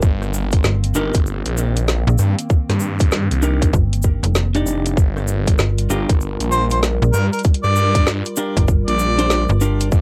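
Up front, a snappy, metallic-edged FM slap bass and a swirling, saturated phased saw bass drive this playful, funky glitch hop cut over a tight, layered kick, woody snare, metallic hats, rim clicks and a grainy egg shaker, while a dark, clean semi-hollow guitar stabs through 12-bit grit and tape echo, a warbling, nostalgic pad pumps in the background, and a clear, vibrato-laden harmonica melody appears at 6.5 seconds, all with a lo-fi cassette home-recording character.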